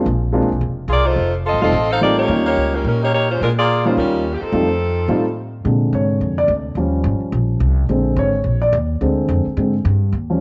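A clear saxophone section carries the melody from 0.9 to 5.4 seconds, its smooth top and vibrato giving the ensemble a polished jazz sound up front in the mix. This is joyful, swinging big band jazz at 214 BPM in 4/4, cut from a longer piece. Underneath, a dark, mellow upright piano comps from the start, while a woody pizzicato upright bass on steel strings anchors the low end. The harmony moves through dominant sevenths on Bb7, F7 and Eb7. From 5.7 seconds the piano takes a solo over the bass. A moderate echo chamber reverb lends a studio glow, and the highs are rolled off, giving the recording a softened top end.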